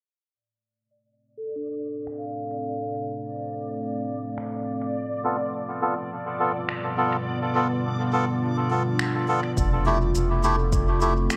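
Ambient dub with a spacious, hazy mood, cut from a longer piece. It opens on a reversed, dreamy swelling texture and soft-mallet vibraphone arpeggios with dub echo, soon joined by a deep, moody sawtooth pad with chorus and tape-toned electronic finger snaps and shaker, while a filter sweep moves over the pad and vibraphone as the chords shift from F to G7. A reedy, breathy melodica enters with close-miked stabs at 5.2 seconds, and at 9.6 seconds a round analog bass arrives up front with an overdriven electronic kick in the background under an Fmaj7 chord, all held in a moderate echo-chamber reverb.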